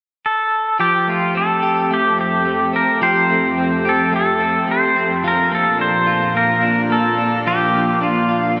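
A bright, twangy pedal steel guitar carries the melody in this dreamy, floating dream pop excerpt, played with fingerpicks and slide, its volume swells trailing tape echo from 0.3 seconds. A clean electric guitar, picked and up front, adds lush-chorused arpeggios with tape echo from 0.8 seconds, while an ethereal, airy pad of detuned sawtooth and triangle tones enters at 1.4 seconds with slow-attack, mellow chords, ensemble chorus and its own reverb. The harmony drifts from Fadd9 to Bb, and the mix is soaked in a cathedral reverb with a long 5.5-second tail.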